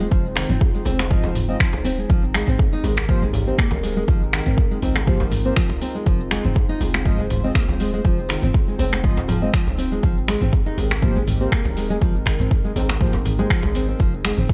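A dark, detuned analog pad, fingerpicked nylon-string guitar arpeggios, a deep, boomy 808-style bass, an afro-pop kit of finger snaps, metallic hi-hats, shaker and toms, and very quiet, close congas open this driving, hypnotic afro house excerpt at 121 BPM with a light 16th-note swing, the pad, guitar and bass pumping with sidechain. An overdriven, up-front electronic kick arrives at 0.1 s and a tight, cracking djembe sits in the background from 0.4 s, while round, brassy synth stabs with chorus and tape echo come in at 1.1 s and stop at 13.5 s. The harmony moves between Fm7 and Abmaj9 inside a digital ambience, with phaser and 12-bit sampler grit on the pad and tape echo trailing the guitar.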